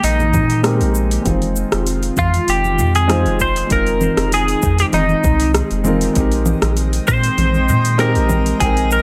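Under light digital reverb, this relaxed, wistful sunset chillout excerpt in F minor moves at 98 BPM with a gentle sixteenth-note swing, as a bright, twangy twelve-string electric guitar carries the melody up front with delay, a vintage grand piano plays filter-swept accompaniment, an airy, breathy pad holds chorused chords, and a round analog bass sits deep beneath an overdriven deep house drum kit with metallic hats, soft-handed congas, and a background electronic kick, while a glassy, drifting harmonics texture joins at 6.5 seconds.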